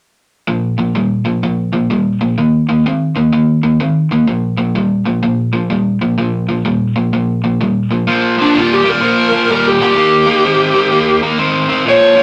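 Gritty and soulful, this swung blues excerpt opens at 0.5 seconds with a bright, cranked stack guitar picking a riff in its low-to-middle register. At 8.4 seconds a dark, smooth lead guitar enters for a picked solo that sits higher than the riff and runs to the cut at 12.2 seconds. Both guitars carry overdrive and sit up front in a moderate studio reverb.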